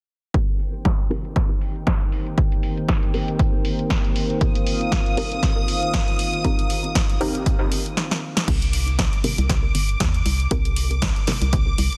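This late-night, moody deep house excerpt rides a swung 4/4 groove, with a punchy, up-front electronic kick carrying tape-warm weight and a layered house kit adding a punchy snare, hi-hats and crash cymbal, all softened by low-pass filtering on the hats, snare and cymbals. A drum fill arrives at 8.0 seconds, and filter sweeps move across the drums and the dark analog pad through the opening section. That pad holds sustained Cm7 chords in a deep, detuned sawtooth tone with slow attack and chorus, pumping against the kick until 8.4 seconds. Beneath it, a muted, filtered dub chord stab plucks short, mellow chords through phaser and tape echo, its filter sweeping throughout. At 4.4 seconds a shimmering, vintage string machine of violins enters high with a soft attack and ensemble chorus, and at 8.5 seconds a hollow, organ-like FM bass takes over the low end with fast, decaying notes, both pumping with the kick. 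Light digital reverb surrounds a dense, heavily limited modern master.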